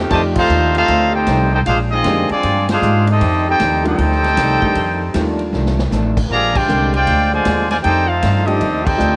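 A clear, very quiet saxophone chord sounds alongside piano and bass at the start of this brassy, swinging big-band excerpt at 155 BPM in F major, quickly giving way to an up-front trumpet section carrying the melody over a tight trombone second line in the background, a woody, growly pizzicato upright bass, open grand piano and dark, very quiet hollow-body guitar comping through F13 and Bb13, while a distant, roomy drum kit with a boomy kick swings beneath band accents and a short fill at 5.5 seconds, all in light studio reverb.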